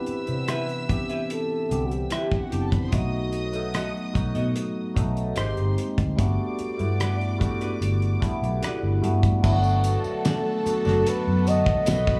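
A breathy, whispered flugelhorn opens this lush, romantic 1970s-style soul excerpt at a slow 74 BPM, its dark, scooped notes floating over a barky electric piano run through a phaser and a close, intimate violin section bowed sul tasto with a soft attack and tape echo. Within moments a dry, damped drum kit with a fat snare and tight kick joins a round, foam-muted fingered bass, both sitting up front, while a clean semi-hollow guitar picks a riff in the background, bathed in spring reverb. The harmony drifts through Cmaj7, B7, Abmaj7 and Gmaj7, giving the groove a warm, romantic colour. At 9.4 seconds the music moves to a Bm7 and a shimmering sawtooth string machine enters with sustained, chorused chords, joined by a jingly tambourine. The flugelhorn returns at 10.3 seconds for a final smooth phrase, all set in a light, small-room ambience.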